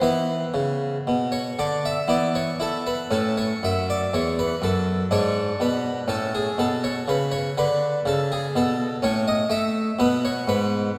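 In a slow, rubato three-four at 60 BPM, this radiant, serene baroque-style suite movement in A major unfolds on a solo harpsichord, tuned to A4 = 439 Hz and spanning E2 to E5. The close-miked French-style instrument sounds brilliant, plucked and up front, its octave strings giving a full body, while a long concert-hall reverb of 2.5 seconds surrounds it. The harmony moves from an opening E5 to A major, through a G# diminished chord back to A, and comes to rest on G# minor add 11 at 10.0 seconds in this brief cut from a longer piece.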